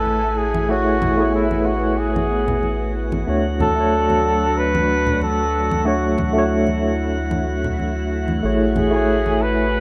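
A distant, vibrato-laden flugelhorn sings a blissful melody up front in this smooth sunset chillout excerpt at 93 BPM in A major, over a worn, slightly out-of-tune tine electric piano with medium tremolo, sampler grit and delay, a silky, warbling string machine in the background, a round, dark analog bass, a glassy texture of drifting overtones, and close acoustic congas from 0.1 seconds, all moving from Amaj7 to Dmaj7 and back at 8.4 seconds in a rough home demo mix with light reverb.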